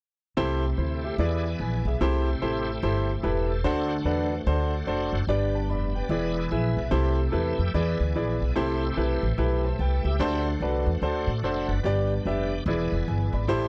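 A dry, close 1970s-style studio sound frames this hopeful, jubilant uptempo gospel cut from a longer piece at 146 BPM in swung 4/4 and C major, where a clear, up-front concert grand piano with deep bass and long sustain carries the accompaniment over a woody, dark pizzicato upright bass with steel strings, while a bright, shouting tonewheel organ with key click, chorus vibrato and a slow rotary speaker holds sustained chords through a C6, E7, Am7, D7, G cycle, and the piano breaks into a fill from 6.1 to 6.9 seconds.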